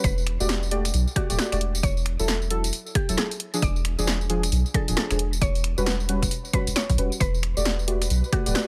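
Soulful and skippy, this short cut of two-step UK garage swings on a punchy, overdriven analog drum machine of snare, hi-hat, finger snaps and tambourine over an electronic kick, with a round, soft dub sub bass sitting up front. Deep, warbling chord stabs with a vintage, detuned character and a woody, mallet-like synth pluck carrying the melody both trail off into chorus and dub echo over jazzy extended chords. At 7.5 seconds an ethereal, airy pad drifts in far in the background, pumping under sidechain, while the dry mix keeps the groove close and tight.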